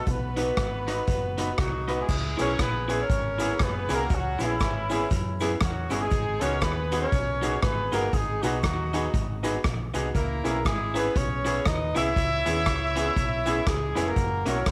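Ska with a bouncy, upbeat swing, led by an up-front horn section with light vibrato and octave doubling, over a round, punchy hollow-body bass and a boomy, airy street-band drum kit with dark cymbals and slapback echo, while a slightly broken-up guitar sits in the background, a brilliant, woody upright piano adds stabs, and a grainy cabasa enters very quietly at 2.1 seconds as the chords move from C#m7 to G#m7 in this excerpt from a longer piece.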